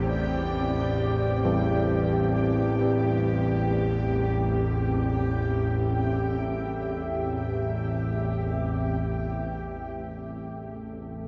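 A deep, moody pad sits up front in this ominous dark ambient drone in free time, its detuned sawtooth chords with sub-octave weight and chorus moving from Cadd9/A to Am at 9.2 seconds. Beneath it a tense, string-like drone holds low with vibrato, while a bubbling, resonant texture of random filter steps sits above until 9.2 seconds. Mellow bronze carillon bells ring arpeggios through tape echo in the background from 1.4 to 6.9 seconds, all of it soaked in a huge, dreamy reverb in this fragment of a longer piece.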